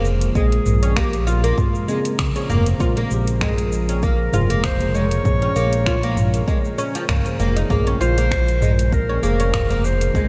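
A smooth, gliding, up-front synth bass anchors this mystical, earthy organic downtempo excerpt at 98 BPM in Bb minor, resting on a single Bbm9 chord with a light 16th-note swing, while a dark, distant clarinet carries the melody through delay and slapback echo, a woody, bright oud plays arpeggios roughened by 12-bit sampler grit, muted felt-like synth keys and a chorused analog pad in the background both pump with the sidechain, and an overdriven afro-pop kit of cabasa, finger snaps, metallic hi-hats and toms is joined at 0.4 seconds by a deep, tape-tinged electronic kick in a small room, all under light reverb.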